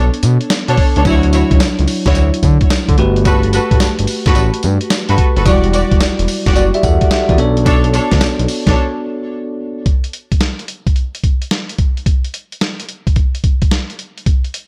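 A gritty, compressed sampler-style drum kit sits up front in this flirty, upbeat new jack swing excerpt, with a thumpy kick, a medium-tuned snare, hi-hat and tambourine all bathed in gated reverb over a swung sixteenth-note feel. A very quiet, close and dry cowbell adds a metallic accent, while a gliding sawtooth-and-square synth bass with portamento sustains underneath. A bell-like tine electric piano, bright and clean as if through built-in speakers, carries the R&B harmony through Bm9, Dmaj9, Gmaj9 and Em9 chords. A lush, distant studio string section plays bowed stabs with vibrato, trailed by digital delay. After a break at 8.8 seconds, the drums carry on alone from 9.9 seconds in a dry mix.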